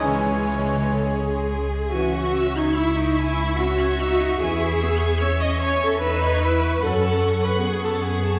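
A lyrical, serene classical passage in C# minor, in a rubato 3/4 at 59-76 BPM, opens with a lush violin section carrying the melody in the background and a clear, even violin section on a second line, over a focused viola section up front, a rich, lush cello section and an intense double bass section, while a mellow clarinet, an airy hollow flute, an oboe and a trumpet stab sound only at the start before a dark, distant French horn section sustains chords from 1.9 s to 7.1 s, the ensemble heard from further back in a reverberant scoring-stage space as the harmony moves from C#m through C#m/E to F#m.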